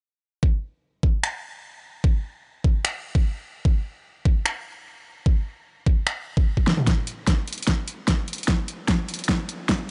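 Future bass at 149 BPM in 4/4, carried with a half-time feel, this brief excerpt cut from a longer piece has a playful, bright mood. An electronic kick drum opens at 0.4 seconds, layered and up front with a knocking, overdriven punch. A pop drum kit joins at 1.2 seconds, bringing finger snaps, hi-hat, snare drum and toms, its fat snare and warm hats also overdriven and given a small-room re-recorded character. A drum fill arrives at 6.7 seconds, and from 6.9 seconds a fresh section builds up with continuing fills until the close. The sound is dry and close, with a rolled-off top end that keeps the highs restrained.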